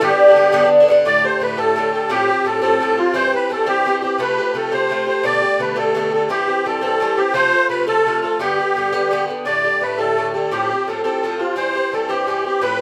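Celtic folk in G mixolydian: a cheerful, sunny 6/8 tune at 114 BPM, counted in dotted quarters, cut from a longer piece and tuned to A4 = 443 Hz. A reedy, shimmering musette accordion with wet musette tuning carries the melody up front for the full 12.8 seconds. Beside it, an acoustic, metallic Irish bouzouki with picked double strings gives brilliant, up-front accompaniment over chords moving among G, C and F with suspended and added-ninth colours, the two players sounding live together in one room within a moderate large-studio reverb.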